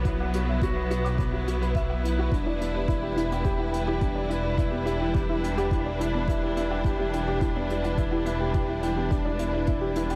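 Hypnotic, intimate piano-and-strings electronica opens on clear bowed strings holding sustained chords with sidechain pumping, a soft felt-muted upright piano riff trailing analog delay, and a dark, rumbling detuned saw bass with tube saturation up front; an overdriven electronic kick joins them along with a brushed hi-hat and woodblock in the background, and from 2.5 seconds a warbly, lo-fi dusty pluck adds chorused arpeggios, inside a dreamy mix soaked in plate reverb.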